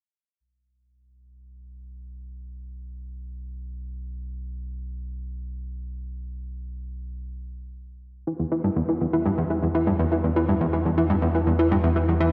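Hypnotic and cosmic, this excerpt of ambient, sequencer-driven space music in E minor moves at 122 BPM in a straight 4/4, opening at 0.4 seconds with a deep, round sine sub bass that fades in, ranging between B1 and E2, under a dreamy hall reverb, before a punchy, funky analog bass riff of sawtooth and square tones with a fast filter pluck and tape echo enters up front at 8.3 seconds as the harmony settles on Em.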